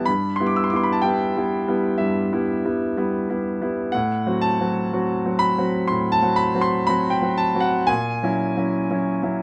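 Recorded with close, detailed microphones and light reverb, a clear concert grand piano sits up front with a natural tone, deep bass and long sustain. This brief fragment of a romantic nocturne for solo piano moves at a slow, rubato 62 BPM in 4/4, its melancholic, mournful mood spanning G2 to E6. The harmony passes from Em/G to F#dim/A at 3.9 seconds and arrives at F#7/A# at 7.9 seconds, shortly before the 9.4-second clip ends.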